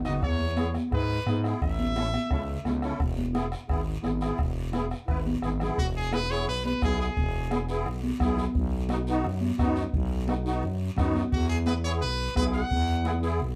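A straight four-beat cumbia groove drives this joyful, festive passage, with a close, soft-beaten bombo, high-tuned congas struck with hard hands and a raspy, saturated guiro. Beneath them sits a growling FM bass, thick and sustained with a fast attack, placed up front. A reedy musette accordion fills in the chords with a shimmering, airy tone, moving among E, A and B. The brilliant trumpet carries the melody in punchy, forceful pop-style phrases with light vibrato, though it sounds distant and roomy. It returns at 5.8 seconds as the second section begins after a brief drum fill, and again at 11.3 seconds. A wet studio ambience places the band further back in the room.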